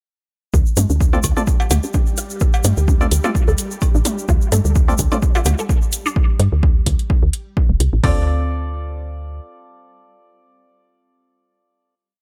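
Minimal techno with a sparse, clinical mood, where a punchy, tape-warm analog drum machine drives a four-on-the-floor kick under metallic electronic hats, a close, grainy egg shaker in hand-played sixteenths and electronic toms and cowbell clicking in cross rhythm with digital delay, while a woody, round FM bass pumps through a syncopated riff, a juicy, squelchy blip pluck with phaser, tape echo and cassette grit cycles a 9-step loop drifting against the bar, a swarming drone holds a high note in the background, and hollow, organ-like stabs echo sparsely before settling on a final Dm7 chord from 8.0 seconds.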